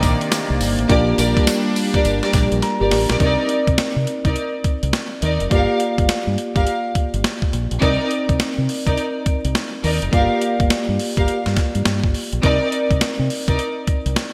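Bouncy and slick, this new jack swing R&B excerpt moves at 104 BPM in C minor with a 16th-note swing, cycling mainly between Cm9 and Gm7 chords. A gritty, compressed, sampler-style boom bap kit sits up front with a thumpy kick, high-tuned snare, hi-hat and tambourine, all washed in gated reverb, while a deep, round fingered electric bass anchors the low end with a dark, amped tone. A clean tine electric piano comps throughout, heard as if through its own built-in speakers, and a close, intimate studio string section adds bowed stabs with vibrato and a smooth, sul tasto top, echoed by delay. A swirling, detuned sawtooth pad with phaser and chorus holds sustained chords only through the opening 3.2 seconds, ending as an electric piano fill and a drum fill lead into the longer second section. The whole mix is bright and glossy in a 1980s digital style, set in a lush two-second hall reverb.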